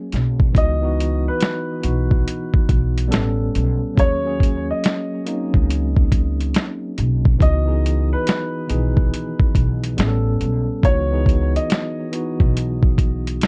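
Muffled, compressed sampler-style drums with a thumpy kick sit up front in this reflective, nostalgic lo-fi hip hop excerpt at 70 BPM with a swung 16th feel in C# dorian, alongside a growly, woody pizzicato upright bass, a clean, filtered tine electric piano playing chords such as C#m11 and A9, and a filtered upright piano melody entering at 0.6 seconds, all set in a dark, lightly reverberant production.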